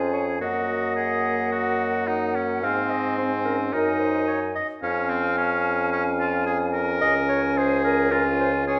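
Lively and spirited, this quick classical-period movement for wind quintet in Db major moves at 109 BPM with a rubato feel, as a hollow, vibrato-touched flute carries the melody over a clear, up-front oboe second line, a warm clarinet and a clear French horn in accompaniment, and a mellow bassoon bass, all five sounding throughout the 8.8-second excerpt in a wet recital hall.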